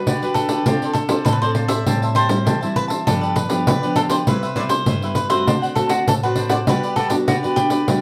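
Lively and nostalgic, this 8-second cut from a longer samba and choro piece moves at 100 BPM in a straight 4/4 in G major, tuned slightly sharp to A4 = 444 Hz, with harmony turning from Gmaj7 through Dm7, Am7, G7, Cmaj7 and D7 before landing back on Gmaj7. A crisp, picked cavaquinho carries the melody between F#4 and E5 over a warm, fingerpicked classical nylon-string guitar, while a second, brighter cavaquinho adds accompaniment higher up, reaching A5. A jingly pandeiro played with soft hands sits close, dry and up front, and the band plays live together in one room with a short studio ambience around them.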